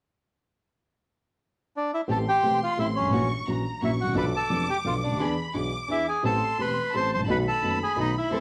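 A rubato three-beat sway carries this melancholic, sultry tango excerpt, where a reedy, up-front bandoneon takes the melody from 1.8 seconds before a distant, richly vibrato-laden violin section adds a second line, a dark, mellow baby grand supplies long-sustained accompaniment, and a very quiet gut-string chamber ensemble punctuates with close stabs, all joining at 2.1 seconds, as the band plays live in one room with moderate reverb.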